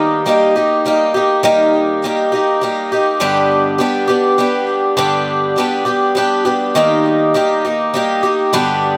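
A picked twelve-string acoustic guitar plays alone and up front through this brief, hopeful rock passage in 3/4, its shimmering, octave-doubled, boxy jangle carried by a digital delay and light reverb as the harmony moves from Eb to G at 3.2 seconds and back to Eb at 6.8 seconds.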